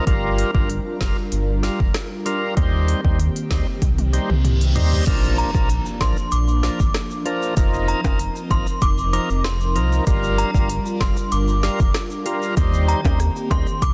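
A gritty, overdriven tonewheel organ and a soft, breathy pad open this sunny dancehall excerpt at 96 BPM in Bb major. Both pump against the beat, the organ turning through a slow rotary speaker and the detuned pad carrying chorus. A full sine-and-triangle sub bass with an added octave and an up-front deep house kit (deep kick, woody snare, smooth hats) join almost at once, under chords that cycle through Gm7, Eb6, Bb and F7sus4. A drum fill from 3.8 s is joined at 4.2 s by a reverse cymbal in the background, building to an electronic impact that marks the turn at 5.1 s, where a close, dry tube shaker and ringing acoustic timbales come in. Just after, an FM synth chime carries the melody high up, its inharmonic, mellow tones decaying through ensemble chorus and digital delay, while light reverb and a dense, heavily limited master give the summery groove a polished modern sheen.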